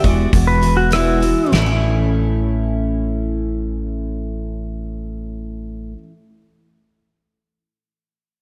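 A clean, compressed pedal steel guitar with volume swells and slapback echo opens this hopeful folk rock and heartland rock piece, taking a solo and slowing down over the first 1.5 seconds. Beneath it play a dry, damped 70s drum kit with dark cymbals and a fat snare, a thumpy, woody upright bass, and a shimmering, octave-doubled twelve-string acoustic guitar. The steel stops as the harmony moves from Eadd9 to A, and the drums follow shortly after, leaving the jumbo twelve-string, also touched with slapback echo, and the up-front pizzicato bass to carry on until 6.1 and 5.9 seconds respectively, all within a lush hall reverb that gives a big arena sound.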